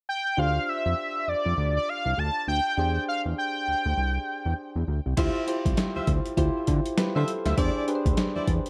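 Set in a light, digital-sounding reverb, this slick, confident new jack swing excerpt moves at 100 BPM with a swung sixteenth feel, opening on a bold, bright octave-doubled sawtooth lead with chorus and vibrato over soft, round electric-piano-like synth keys and a fat, detuned analog bass with ring modulation and filter sweeps, cycling through Dm11, E7alt and Csus2. The lead drops out at 4.5 seconds, and at 5.2 seconds a mellow, jazz-style horn section enters with smooth stabs through a digital delay, alongside a gritty, pitched-down boom bap sampler-style kit with a thumpy kick, medium-tuned snare, hi-hat, crash and gated reverb.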